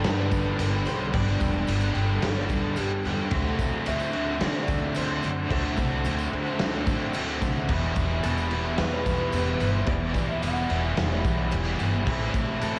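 A cassette home recording in a small room opens this blissful, wistful shoegaze and dream pop rock cut in G major, moving at a straight 110 BPM in 4/4 through ninth chords that land on A minor. Up front, a gritty, saturated raw garage drum kit with a tight kick and a medium-tuned snare drives alongside a biting overdriven guitar riff trailed by reverse reverb, while a thick fuzz guitar with subtle chorus churns further back and a woody pizzicato upright bass anchors the low end. Floating above, a slightly broken-up, compressed electric guitar melody through a small old amp carries tape echo, an icy, crystalline glass pad sustains very quietly, and a jingly tambourine sits in the background.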